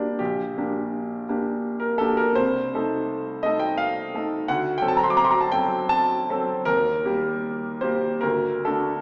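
Brooding and stormy, this short excerpt from a longer romantic character piece for solo piano moves in a swaying triple metre, its uneven beats stretched and pulled by rubato. A single concert grand carries everything, reaching from deep, dark bass notes up into its bright upper register across the full 9.0 seconds. Its tone is clear and smooth with a vintage cast, and it sits up front even as the listener seems placed further back in the room. The harmony drifts through shadowy, unsettled chords before leaning on a dominant colour and arriving on a D major chord at 8.2 seconds, leaving the phrase unresolved. A generous recital hall reverb with a 1.6-second decay lets each chord ring into the space, while the overall sound has the narrow character of a small speaker.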